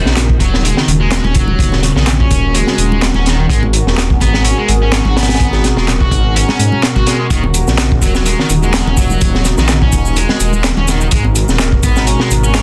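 A swirling, nasal analog pad opens at 0.0 seconds, its phaser, chorus, 12-bit sampler grit and sidechain pumping colouring sustained Ebm7 and Abm9 chords. A swaggering, funky breakbeat at 126 BPM in Eb minor then arrives, with a swung 16th feel: a crunchy, dark acoustic kit with a punchy kick and high-tuned snare sits up front beside a thick, beating, detuned saw bass, while tape-warm electronic handclaps and shaker join in. From 0.4 seconds close, dry congas settle into the background and a bright, double-tracked fuzz guitar riff with tape echo cuts through a dense, heavily limited mix dressed in light reverb.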